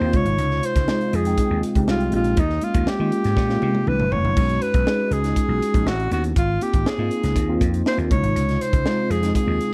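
A breathy alto saxophone carries the melody from the opening moment, over a mellow tine electric piano and a growly, amped slap bass, with a crisp fusion drum kit joining at 0.1 seconds. This short cut from a longer piece is polished 1980s jazz-funk pop in Ab major, upbeat and urban, moving at 120 BPM in a straight 4/4. Up front and intimate, the saxophone has a soft attack and a whispered, pop-style solo tone, touched by a slapback echo. The electric piano sounds clean and warm through its built-in speakers, shimmering with ensemble chorus as it moves from Ab69 through Eb9sus4, C69, B69 and A69 before returning to Ab69. The bright, punchy slap bass drives underneath, while the acoustic kit brings bright cymbals, a high-tuned snare, a punchy kick and toms, with a drum fill from 3.4 to 4.4 seconds. A small, pumping room ambience surrounds the drums.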